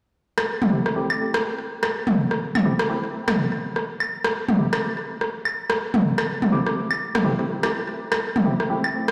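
Hypnotic and cool, this minimal techno passage at 124 BPM in A minor, cut from a longer piece, sets an up-front, tape-toned click drum kit of claves, rim clicks and toms with digital delay against a hollow, mellow organ stab between A3 and G4 that carries chorus, ring modulation, delay and a filter sweep across an Am7 chord from 0.2 seconds, all heard through a lush 2.1-second hall reverb as if played on a big sound system in a bare room.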